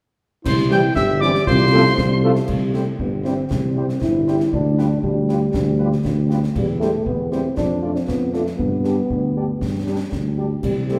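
Proud and festive, this short military-style march for wind band moves at 118 BPM in a straight 2/4 in C major, cut from a longer piece and heard in a reverberant concert hall. A smooth cornet carries the melody over a mellow solo euphonium line and an up-front tuba bass, while concert snare, bright clash cymbals and bass drum drive the beat and a warm French horn section accompanies in the background. A crisp, pure piccolo with vibrato sparkles briefly from 0.5 to 2.2 seconds alongside close-miked trombone chords, before the music settles into its second section at 2.5 seconds.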